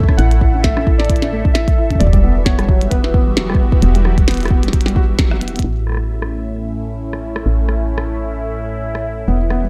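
A glitchy, wistful IDM fragment opens with a deep, up-front electronic kick, a round, woody FM bass and a swirling, pumping phased analog pad. Over them, a felt-muted upright piano with audible action noise plays delayed arpeggios and warbly lo-fi synth keys carry a nostalgic melody, while a glitchy kit with a tiny snare and clicky, filtered hats enters at 0.1 seconds on a swung sixteenth feel. The melody bows out at 5.1 seconds, and after a band accent at 5.2 seconds and a drum fill, the piano and kick drop away too, leaving bass, pad and kit in a dark, dry mix until the piano returns briefly at 9.3 seconds.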